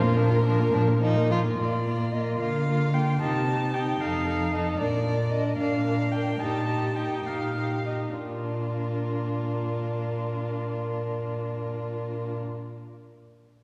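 In a rubato 6/8, this quick, dramatic and restless classical-period string quartet passage pairs a dark, vibrato-rich first violin melody with a smooth second violin line, a focused viola accompaniment and a woody cello bass set up front, slowing between 4.0 and 8.2 seconds, the quartet heard from further back in a wet scoring-stage reverb.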